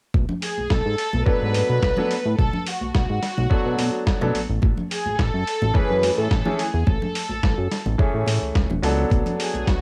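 Groovy and sensual, this nu-disco excerpt rides a swung 16th feel in which a fat, detuned sawtooth analog bass, saturated and pumping against a gritty, overdriven electronic kick, sits up front alongside bright, high-tuned congas and a dusty soul sampler-style kit of hi-hat and medium-tuned snare, while a soft-attack, floating studio violin section enters at 0.4 s and a brilliant concert grand piano joins at 1.3 s over Bm7 moving to Amaj7, all with a light reverb and the worn character of a home cassette recording.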